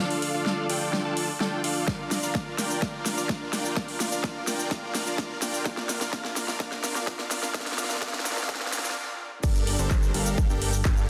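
Powerful and euphoric, this short cut from a festival progressive house track runs at 127 BPM in straight 4/4, opening with a thick, detuned supersaw riff pumped by sidechain and pushed through a low-pass filter and tape echo while a big-room dance kit with a huge snare, metallic hats, handclaps, shaker and crash rolls through a drum fill and filter sweep over Dm and Bb chords. A punchy, overdriven electronic kick joins at 1.9 seconds to drive the build-up, then a brief stop gives way at 9.4 seconds to the drop on Gmadd9, where a fat analog bass on G1 pumps beneath the riff. The sound is dense and heavily limited, with the drums up front in a lush hall reverb.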